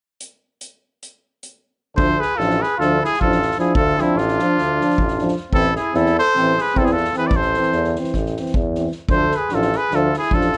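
A distant, roomy soft-mallet drum kit opens this fiery, restless Balkan brass band excerpt on its own at 0.2 seconds, its punchy kick, medium-tuned snare and hi-hat setting a brisk 9/8 at 303 eighth-note beats per minute in D dorian sharp4. At 2.0 seconds the full band arrives over a harmony that moves from Dm to Am and back to Dm. Up front, a clear trumpet carries the melody between E4 and D5 in a classical style, trailed by analog delay. A flugelhorn with light vibrato and a vintage tone plays a softer second line underneath. Two euphoniums fill the accompaniment: one sits in the background with a distant, roomy sound, while the other is warm with a soft attack, and a tuba with gentle vibrato anchors the bass from A1 to E2 in moderate studio reverb.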